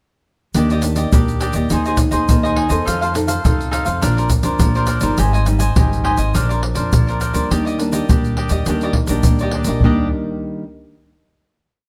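A nylon-string guitar and a samba percussion section of tube shaker, surdo and pandeiro open this short, lively samba and choro piece at 0.5 s, setting a playful mood at 103 BPM in Eb major. The guitar is small and thumb-plucked, pairing a thumb bass with syncopated plucked chords, while the percussion sits close and dry, up front in the mix, with a tight surdo and soft hands. An instant later the cavaquinho joins with mellow yet crisp strumming in sixteenths, and the upright bass enters with a woody, thumpy pizzicato samba figure on gut strings. The harmony moves from Ebmaj7 through Ab/Eb, F7, Bbadd9, Abmaj7 and Bbadd9 again before returning to Ebmaj7, and the piece comes to rest on a final chord at 9.8 s. A moderate large studio reverb, with a decay of about 1.2 s, surrounds the ensemble.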